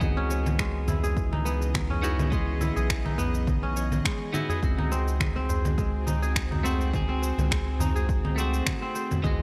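Meditative and hypnotic, this organic downtempo excerpt with a gentle swing sets ringing, fingerpicked kora arpeggios and twangy, bright clean electric guitar accompaniment, both trailed by digital delay, over a tense, detuned bowed-like drone in the background and a round, dark analog bass, with the guitar, drone and bass pumping against a punchy, layered electronic kick, tape-warm electronic congas, shaker and finger snaps, and a very quiet, crisp metal-shell darbuka joining at 0.7 s, under light reverb.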